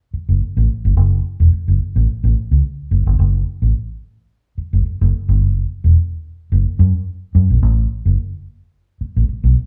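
A vintage muted fingered electric bass plays alone from 0.1 to 9.5 seconds in this funky, hypnotic funk excerpt at 108 BPM in 4/4 with a light 16th-note swing, its dark, round, punchy, foam-muted amped tone sitting up front between E1 and F#2 in a moderate large-studio reverb that gives the feel of a band playing live in one room.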